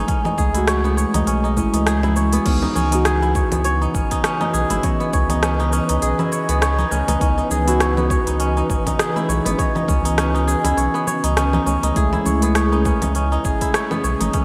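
Organic downtempo in C# minor at 101 BPM, this short excerpt from a longer piece carries a mystical, earthy mood with a swung sixteenth-note feel in 4/4. A bright, fingerpicked kora rings up front with crisp arpeggios and a touch of delay, while muted, felt-like synth keys add soft, dark accompaniment shaded by chorus, delay and sidechain pumping. Underneath, a round sine sub bass holds the low end, pumping with the sidechain, as a deep, tape-warm electronic kick anchors a produced afro-pop kit of crisp hi-hats, rim clicks, shaker, congas and crash cymbal. Very quiet bongos and congas, close and dry with hard hands, add an acoustic texture. At 3.8 seconds an ethereal, airy pad enters in the background with slow-attack detuned chords, ensemble chorus and its own reverb. The harmony moves from F#m7 to C#m7 and returns to a rootless F#m7 at 12.0 seconds, all set in a lush hall reverb with a bright 1980s-style digital production.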